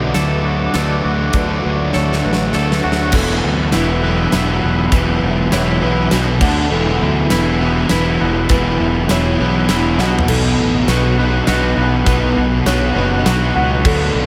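A crunchy overdriven guitar riff with ensemble chorus takes the front from 3.1 seconds, following a sludgy distorted guitar riff and a warbly, lo-fi tape-like pad of dark sustained chords that open this brooding, melancholic post-rock excerpt in 3/4. Beneath it, a growly fuzz bass and a huge arena drum kit with a punchy kick and bright cymbals drive the music, with drum fills at 1.9 and 10.0 seconds, while a twangy clean electric guitar and a mellow felt-muted upright piano play delayed arpeggios in the background. The dreamy mix is soaked in a huge ambient reverb.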